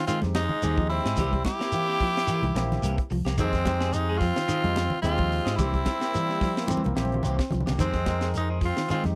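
A growling, raspy tenor saxophone carries the melody up front in this driving, intense afrobeat excerpt in F minor at 109 BPM, with a breathy, whispered trumpet behind it and a clear bass trombone adding a scooped second line from 6.1 to 7.6 seconds. A round, punchy fingered bass and a tight funk kit with a high-tuned snare anchor the swung groove, joined by grainy shekere, damped congas, and a barky, lightly overdriven electric piano. Two slightly broken-up electric guitars fill in, one playing dark arpeggios and the other picking phased stabs, while a drum fill arrives at 6.7 seconds, all captured in a dry, close 1970s-style studio sound over a cycle of Fm7 and C7.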